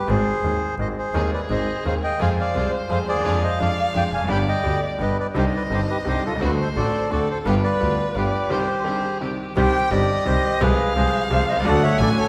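A reedy, dark bandoneon carries the melody up front in this dramatic, sultry tango excerpt in C harmonic minor, a rubato 3/4 at 171 BPM, over a brilliant, worn concert grand piano with audible action noise and deep bass, and a biting, earthy bowed double bass with light vibrato. At 1.1 s a single violin enters with an expressive second line full of vibrato and portamento, while a lush, focused studio string section adds stabs in the background until 9.4 s. A break at 8.5 s precedes the return of the opening section at 9.6 s, all set in the long, wet reverb of a church or concert hall.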